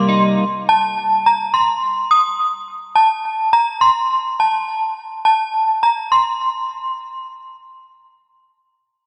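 A hazy, ethereal wash of moderate plate reverb opens this short dream pop excerpt, cut from a longer piece and set at 105 BPM in straight 4/4 in C dorian. The only part is a synth chime carrying the melody from 0.0 to 6.9 seconds, sitting up front in the high register between A5 and Eb6. Its vintage FM tone is chiming and inharmonic, with a fast attack and ringing notes that decay into a long release. An ensemble chorus gives the chime a warbling, mellow shimmer, and a digital delay trails its notes into the reverb's long tail. The passage stays within a single section, leaving the lone chime suspended in a dreamy, floating space.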